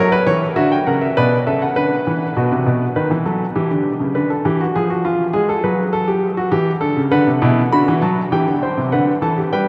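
A straight 4/4 pulse at 100 BPM drives this serious, baroque-style three-part fugue for solo baby grand piano, tuned to A4 = 438 Hz, whose warm, natural tone with short sustain sits up front between B2 and B5 yet is bathed in a huge, wet reverb that places it in a vast, echoing space, as the harmony moves from F# and Bm through B7, Em, Fdim and F#m before arriving on C and D in this 9.7-second cut from a longer piece.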